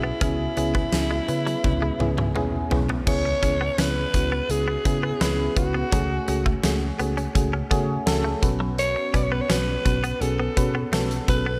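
1980s-style pop at 84 BPM with a nostalgic, dramatic mood, this short cut from a longer piece sets a breathy, raspy alto saxophone melody with tape echo up front over a warbling FM electric piano with tremolo, a bright, twangy clean guitar riff with analog chorus in the background, a dark, round muted picked bass, and a huge arena drum kit with a fat snare and gated reverb that enters at 0.2 seconds and plays a fill from 1.6 to 3.1 seconds, all under chords moving from C#m7 to F#madd9/C# to Bsus2.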